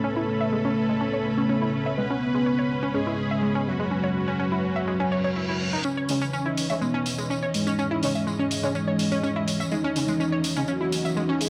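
A straight 4/4 pulse at 124 BPM in C# minor anchors this cinematic, hypnotic melodic techno excerpt, where a thick, detuned unison lead with tape echo carries the melody over a deep, moody analog pad, a round, bright analog pluck arpeggio under filter sweeps, lush bowed symphonic strings and a smooth supersaw second line; a very quiet reverse cymbal and riser creeps in at 5.1 seconds before the supersaw drops away at 5.8 seconds, when a jingly, close tambourine arrives and the build-up begins, with punchy, brassy synth stabs tucked in the background and a layered electronic hi-hat entering at 6.1 seconds, the whole piece carrying light reverb and the character of a home cassette recording.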